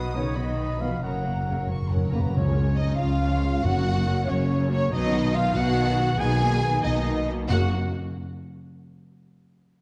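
A dark, lush production set in a wet scoring-stage reverb opens this short cut from a heroic adventure film score in F# major, moving in a straight 6/8 at 93 beats per minute with a triumphant mood. Two bowed violin lines carry the tune and a second line above a smooth, background viola accompaniment, while a rich cello section and an up-front, focused double bass section anchor the bass. A tight trumpet section punctuates with warm stabs, and a very quiet, clear trombone section holds sustained chords only until 2.2 seconds, when a mellow, close-miked French horn section takes over the sustained harmony from 2.4 seconds. Timpani played with hard mallets on calf heads deliver an articulate fill from 1.0 seconds, then return briefly at 7.5 seconds as the harmony settles back on F#. The chords move from B through F# and C# to G#madd9/B before that final resolution, giving the passage a broad, striving sweep.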